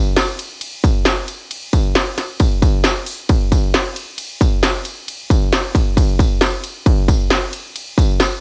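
A straight 4/4 pulse at 135 BPM drives this short indie pop excerpt, carried by an industrial drum kit that runs from 0.2 to 8.3 seconds. The electronic kit sits up front, with a distorted kick, a clanging snare, crisp hi-hats and ride cymbal, all roughened by distortion and a cassette tape coloring. Behind it, a jingly acoustic tambourine plays across the same span, set far back in the mix with a live-room feel. The mood is wistful and restless, and the dry sound, with little reverb, suggests a home recording on cassette dusted with vinyl crackle. Cut from a longer piece, it holds a single section throughout its 8.4 seconds.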